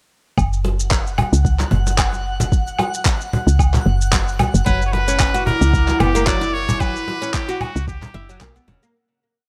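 Meditative and earthy, this short organic downtempo piece moves at 112 BPM in F# phrygian dominant with a gently swung groove. A soft overdriven electronic kick, a tape-warm layer of handclaps, shaker and low woodblock, and a woody cajon with faint snares support a round, mellow FM bass line in dub style, while a twinkling granular shimmer holds a high F# in the background. At 4.7 seconds a nasal, straight-muted trumpet enters with arching jazz-style motifs through digital delay, joined by a plucked fretless oud repeating a 16-step arpeggio sequence and a smooth analog pad with chorus and sidechain pumping on an Em7/F# chord, before the whole piece fades out from 6.1 seconds.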